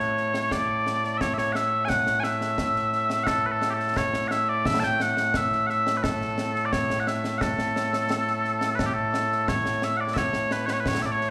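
Mellow small bagpipes and a concert snare and bass drum begin together in this short excerpt of ceremonial, proud Scottish pipe music in a straight two-beat metre, the pipes carrying a sweet, continuous solo melody with vibrato up front while the close, dry drums sit lower beneath them with dark cymbals. Both the pipes and the drums carry a slapback echo. The phrase starts again at 8.8 s, and the whole performance has the feel of a live gig heard through a venue's sound system, with light club reverb.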